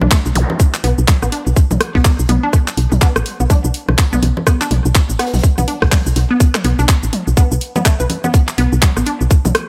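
Light reverb and digital ambience frame this short cut from a longer minimal techno track, and the mood is sparse and hypnotic with a swung 16th-note feel in 4/4. A tight electronic kick sits up front with a little small-room ambience, while a woody, round FM bass with a dark, fast-decaying tone pumps against it. A squelchy, detuned blip pluck carries the riff, its resonant filter and bright square and sawtooth edges coloured by phaser, delay and sidechain pumping. Two layered garage kits fill in the groove: one brings cabasa, handclaps and warm hats, and the other adds congas, rim clicks and toms touched with analog delay. Barely audible beneath them, an acoustic jazz kit contributes hi-hat and a high-tuned snare. A brief electronic zap flickers at 0.4 seconds.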